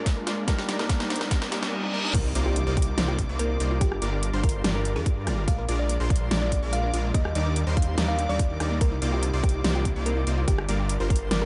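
A half-time 4/4 pulse at 144 BPM drives this emotional, bittersweet future bass excerpt in C minor, where a felt-muted upright piano with audible action noise, a barely audible shimmering ambient pad, a very quiet soft round pluck, a punchy filtered supersaw stab riff, and a quiet riser, reverse cymbal and impact build toward the drop at 2.1 s over a big-room dance drum kit with a huge snare and metallic hats and an up-front, hard-clipped electronic kick, after which a tine-like thumb-piano-style synth pluck carries the melody beside an airy, dreamy lead with vibrato and a thick, saturated detuned saw bass, all pumping in a digital ambience.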